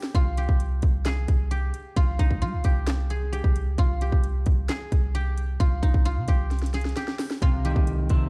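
Melancholic and brooding, this short trap hip hop excerpt in C minor moves at 132 BPM with a half-time feel, pairing a silvery, ringing guzheng melody softened by a low-pass filter and tape echo with an up-front electronic kit of hard-clipped kick, sharp snare, metallic hats and handclaps, a deep, boomy sine 808 bass, a drum fill from 6.5 to 7.4 seconds, and a dark, slightly broken-up electric guitar with analog chorus entering on a C minor chord at 7.4 seconds, all in a dry, dark production.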